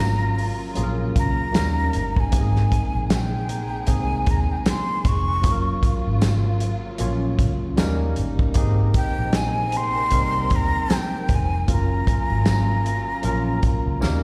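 Lush 1970s-style soul in Ab major at a swung 77 BPM, heard as a live gig through the venue's PA with recital hall reverb, where a breathy jazz flute carries the melody with vibrato and slapback and tape echo over a worn, slightly out-of-tune tine electric piano, dark woody strings in the background, a round, foam-muted fingered bass and a tight soul drum kit with a fat snare and punchy kick, while a jingly, distant tambourine joins at 1.6 seconds, a very quiet, mellow soft-mallet vibraphone rings in from 3.5 seconds, and a drum fill at 14.0 seconds closes this excerpt from a longer piece.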